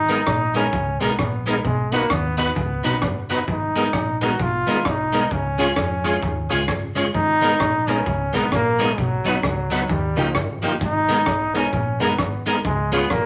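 A brilliant, up-front trombone carries a lightly vibrato-touched melody over a round, hollow-body fingered bass in this driving, mischievous ska excerpt at 131 BPM in G# dorian, swung and cut from a longer piece, where a dark, clean picked guitar and a saturated breakbeat kit with punchy kick and rim click join gritty overdriven tonewheel organ stabs with key click, chorus vibrato and fast rotary speaker that sit in the background, while a very quiet, bright semi-hollow guitar riff enters at 0.3 seconds, all bathed in a wet club reverb.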